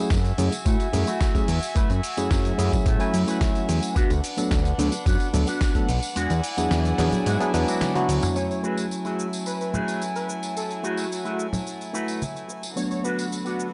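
A dry, gritty hardware sound with light digital ambience frames this sleek, cosmic nu-disco excerpt in F# minor at 109 BPM, where a worn, slightly out-of-tune tine electric piano and distant, floating chamber strings carry the F#m9, D6 and E9 chords under a vintage sampler grit and sidechain pumping. A fat, detuned sawtooth analog bass with transformer saturation sits up front alongside a thumpy electronic kick, joined by a dusty soul sampler-style kit, soft-handed tambourine and congas, and a twangy, scooped envelope-filtered guitar riff with lush chorus and analog delay, plus a clean electric guitar fill at 3.1 s. The kick drops out at 6.2 s before a drum fill, and at 8.4 s a thick, bright wave-folded unison lead with vibrato takes up the melody.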